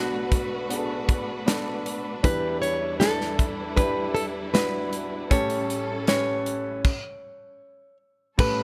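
A heartfelt, emotional pop ballad at 78 BPM in a straight 4/4, this short excerpt is cut from a longer piece. A fingerpicked nylon-string guitar carries the melody between F#4 and C#5, its classical tone marked by audible finger squeak. Beneath it, an intimate, woody upright piano plays the accompaniment from A1 to B4, up front with a long sustain and the natural noise of its action. A studio string section holds sustained chords with vibrato and portamento, bowed smooth on top and expressive as an ensemble. A polished, airy drum kit enters at 0.3 seconds with a tight kick, a medium-tuned snare, hi-hat and crash cymbal, sitting up front in a studio room, and the band halts in a stop from 6.9 to 8.4 seconds. The harmony moves from Bm7 to Em7 at 2.2 seconds and to A7 at 5.3 seconds, all under light reverb.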